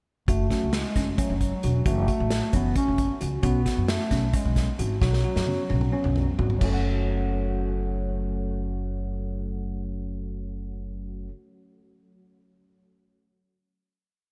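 A tense, intricate 7/8 groove at 264 BPM in eighths drives this short progressive instrumental in F# minor, where a dark bass clarinet states a motif-based melody with analog delay until 6.1 seconds over a bell-like electric piano ostinato with subtle chorus, gritty overdriven electric piano comping in rootless voicings, a woody, thumpy pizzicato upright bass riff, and an up-front acoustic drum kit played with bundle sticks whose fill from 5.0 seconds leads into a final F#m chord held from 6.6 seconds in light reverb.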